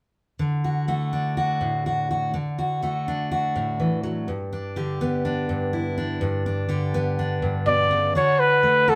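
A warm, jazz-style trumpet with light vibrato stands out at the front of this short indie folk excerpt, entering at 7.7 seconds to play a solo melody between A4 and D5. Beneath it, a bright, full-bodied jumbo steel-string acoustic guitar is fingerpicked from 0.4 seconds onward, also sitting up front as the accompaniment. The piece moves at 124 BPM in a straight 4/4, in D major, with the harmony shifting from D to G and back to D. The mood is hopeful and nostalgic, and the arrangement feels like the start of something building. The band plays live together in one room, lightly touched by reverb, with the tuning set slightly low at A4 = 439 Hz, and the clip is cut from a longer performance.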